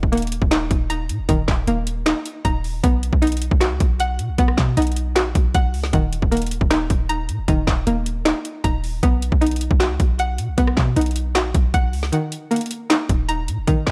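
A twangy, string-like resonator pluck with chorus and digital delay spins bright arpeggios over a boomy 808-style bass and a trap drum kit of hard-clipped kicks, a woody snare, metallic hats, rim clicks and handclaps in this eerie, hard-hitting half-time trap excerpt at 155 BPM in Eb minor, cycling between Eb5 and B chords in light reverb before a brief break at 12.1 seconds.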